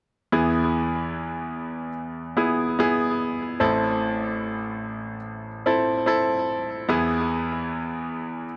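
Tender and emotional, this short pop excerpt unfolds at 73 BPM in 4/4 with a straight feel, centered in E major. A bright grand piano carries the whole piece alone from 0.3 to 8.6 seconds, ranging from A1 to A4 with a brilliant, polished tone that sits up front in the mix. Its short sustain keeps each note crisp, while a touch of delay adds a trail behind the playing. The harmony moves from E to A minor at 3.6 seconds before settling back on E at 6.9 seconds, lending a bittersweet shade to the brief passage. Light reverb surrounds the piano, and the overall production leans dark and warm, framing the instrument's sparkle.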